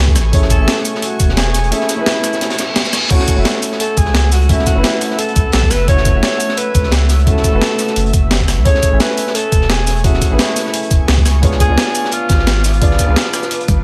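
Set in a small room, this melancholic, rolling liquid drum and bass excerpt moves at 173 BPM in F# minor, with a deep, round sub bass sitting up front beneath a thumpy electronic kick and a compressed sampler-style breakbeat kit of snare, hi-hat, rim click, shaker, toms and crash. A crunchy, saturated acoustic breakbeat kit with a high-tuned snare sits in the background, while a dark, mellow baby grand piano with dub echo and a shimmering, ethereal ambient pad with chorus and sidechain pumping carry chords from Amaj7 through F#m7 to C#7b9. A distant, roomy alto saxophone with soft attack and digital delay takes the solo melody from 0.5 seconds, an electronic reverse cymbal rises at 2.6 seconds, and a drum fill closes the passage at 13.7 seconds.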